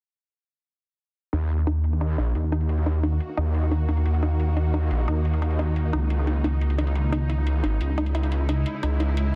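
A dense, heavily limited modern master with little reverb gives this short cut from a longer dark technical drum and bass track a close, compressed presence. At 176 BPM in a straight 4/4, the music sits in Eb phrygian with a futuristic, tense mood, moving from Ebm7 at 1.3 seconds to Dbm at 6.8 seconds. The detuned saw bass dominates the mix from 1.3 seconds, thick and saturated with chorus and overdrive, while metallic electronic hi-hats, layered and tape-tinged under a low-pass filter, sit far back. A unison pluck plays lush, punchy sawtooth arpeggios through cassette tape coloring and delay, and a swarming drone enters at 2.6 seconds with slow-attack sustained chords that warble and evolve under phaser, built-in reverb and vintage 12-bit sampler grit. Filter sweeps run across both the drums and the arpeggio sound for the length of the passage, adding to its tense, futuristic edge.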